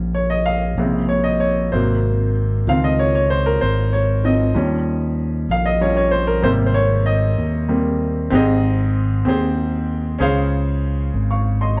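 A bright, woody upright piano with audible action noise plays over a round, punchy fingered electric bass from the start in this uplifting, hopeful slow gospel excerpt at 64 BPM in 6/8 and Ab major, with the piano featured in a solo until 8.3 seconds, moving through Eb7, Bbm7, Ab7 and Dbmaj7 to Abmaj7, both players up front in a large studio with moderate reverb and the feel of a band playing live in one room.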